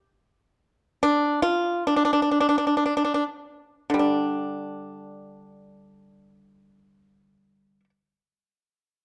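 The recording has a dark, warm production set in a moderate recital hall, its reverb lingering for about 1.3 seconds around a single instrument. This is Chinese traditional music for solo plucked strings, contemplative and full of longing, in the D jue mode. A solo pipa, played with fingerpicks, enters at 1.0 seconds and sounds until 7.9 seconds, its acoustic tone dry, percussive and up front, ranging from D3 to F4. The pulse is a free, rubato 2/4 that moves between 46 and 76 BPM, slowing from the opening through 4.0 seconds before a new passage takes over for the remainder. Cut from a longer piece, this brief moment feels like a fragment of an inward reflection.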